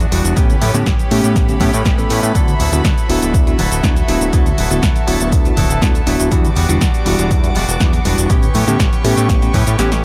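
Joyful, feel-good filtered disco house in straight 4/4, where a fat, detuned sawtooth bass, a twangy clean electric guitar riff, a bell-like tine electric piano with phaser and rich sustained violin chords all pump to the sidechain over a punchy electronic kick, a house kit with cabasa, hi-hats and snare, and very quiet maracas and congas, moving through A9, D69, Em9 and back to A9 in a dry mix until the kick drops out for a drum fill at 9.8 seconds.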